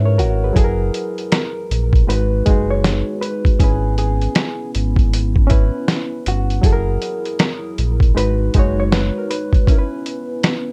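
A muffled, pitched-down sampler-style drum kit with a thumpy kick, snare, hi-hat and finger snaps sits up front in this hazy, melancholic lo-fi hip hop excerpt at 79 BPM with a swung feel in C# dorian, joined by a deep, full sine sub bass that drops out at 9.1 s, a barky, lightly overdriven reed electric piano playing filtered chords, a dark, clean hollow-body jazz guitar carrying a fingered melody from 0.2 s, and a very quiet, detuned analog pad with chorus holding moody chords beneath, all in a dusky mix with light reverb leading into a brief break at 9.7 s.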